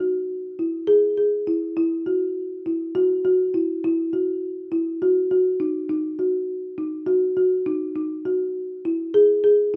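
A folk marimba played with soft mallets opens the recording and carries it alone for its full 9.8 seconds. This is a short contemporary instrumental passage cut from a longer piece, moving at 203 BPM counted in eighths in an uneven 7/8 metre with a straight feel. The mood is urgent yet pensive, and the marimba stays within a narrow span from D#4 to G#4. Its hardwood bars give a woody, round tone with an airy, rustic mellowness, and the instrument sits up front in the mix. Close, detailed microphones and a light touch of reverb keep the sound intimate and clear.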